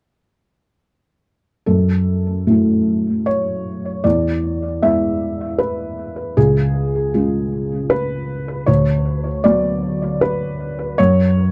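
At 1.7 s a felt-muted upright piano begins alone, its mellow, muffled tone softened by thick felt and sitting close and up front. This is neoclassical minimalist piano in F# minor at 78 BPM in 3/4, played with a rubato feel that gives the fragment an intimate, reflective mood. The harmony moves from F#m7 through E and C# to Bmadd9/D before settling on a bare F#5. The notes have a short sustain, spanning from the low register up into the middle of the keyboard, with a tape echo trailing behind them. The dry, close sound evokes a 1970s-style studio, with moderate booth ambience and an instrument tuned slightly low to A4 = 439 Hz, before the piano stops at 11.5 s, cut from a longer piece.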